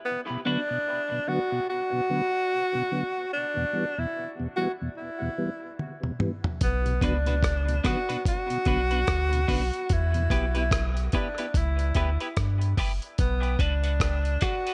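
Dub reggae with a heavy, meditative mood, this excerpt from a longer piece moves at an unhurried, swung pace over a minor-key chord cycle. A breathy tenor saxophone carries the melody from the start: intimate and whispered, with a soft attack, scooped notes, vibrato and a smooth top, it sits up front and trails dub echo. Beneath it, a mellow tonewheel organ adds dark, round accompaniment coloured by chorus vibrato and a slow rotary speaker. After a brief touch near the start, a clean electric guitar joins in earnest from 7.0 seconds with picked, compressed playing bathed in lush chorus and echo. A dusty sampler-style drum kit enters at 5.8 seconds with a fill that closes the opening break, its gritty sound and thumpy kick punching up front alongside hi-hat, rim clicks and toms. A deep, rounded sub bass with a sine-like tone arrives at 6.6 seconds, and a filter sweep runs through the closing seconds of an echo-heavy mix that keeps reverb to a minimum.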